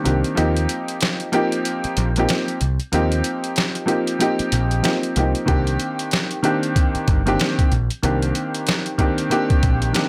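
A worn, woody upright piano opens this short boom-bap hip-hop excerpt, its slightly detuned voicings sitting present and up front as it comps between Eb3 and G4 from the very start. The mood is tough and moody, in C minor at 94 BPM in 4/4, with a 60% swing on the sixteenths giving the groove its lazy lean. A sampler-style drum kit, compressed, pitched down and gritty, pairs a thumpy kick and a medium-tuned snare with hi-hat, carrying a tape-warmed character. Beneath it, a picked electric bass sounds bright, direct and amped, holding down the low end between G1 and Eb2. The harmony rests on Eb69 through a break that runs to 5.5 seconds, then shifts to Cm9, all set in a light reverb as a fragment cut from a longer piece.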